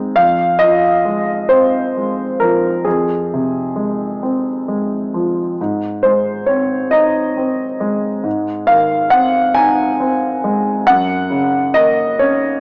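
A solo concert grand piano opens this hopeful, peaceful neoclassical minimalist fragment, its clear, up-front tone carrying deep bass and short sustain as it moves from Fm7 to Ab at 5.6 seconds and on to Gb at 10.9 seconds. The playing breathes freely in a slow, rubato 6/8 across a span from F2 to Ab5. A light reverb and a worn, cassette-recorded home sound with a small-speaker quality give the piece an intimate, lived-in character.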